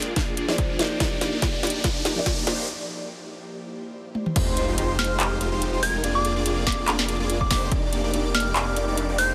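Lush, dreamy future bass with light digital reverb, cut from a longer piece, moving at 143 BPM in a half-time, lightly swung feel in F dorian. Huge, phased supersaw chords with cassette-tape grit and sidechain pumping ride over a very quiet ethereal pad, while a felt-muted upright piano adds soft, boxy accompaniment with dub echo in the background. A trap kit with a sharp snare and metallic hats plays alongside a punchy, overdriven electronic kick, and a riser and sub drop build toward the drop at 4.4 s. There, a thick, detuned saw bass and airy, bright lead arpeggios enter, and a pure FM synth bell melody follows at 5.0 s.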